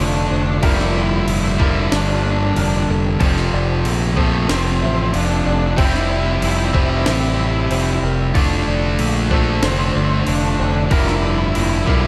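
Post-rock excerpt at 93 BPM in F major, cinematic and euphoric, where a cranked stack guitar's overdriven, up-front riff and a growling, punchy bass drive beneath a dark octave-fuzz lead melody with tape echo, while a very quiet pedal steel guitar holds sustained chords with volume swells, a very quiet twelve-string electric guitar picks arpeggios and a muted felt upright piano with slapback echo ripples arpeggios in the background, and a gritty, compressed breakbeat sampler-style kit with a thumpy kick and high-tuned snare enters at 0.6 s, all over a pedal-F progression moving from Dm/F through Gm/F, F and C/F in light digital ambience.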